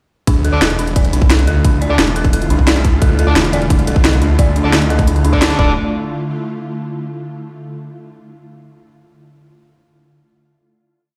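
A growling, distorted sawtooth bass snarls up front in chopped phrases through this short, dark, futuristic technical drum and bass piece, driven by a tight, tape-warm electronic kick and overdriven drums with a cracking snare and bright closed hats, while an eerie, inharmonic detuned synth bell loops a five-step sequence drifting against the bar, a swarming, wave-folded drone sustains tense chords from 0.8 seconds, sparse distorted electric guitar power-chord stabs echo in from 0.5 seconds, and the drop, played through a big sound system in a bare stone room, gives way to a final hit at 5.8 seconds.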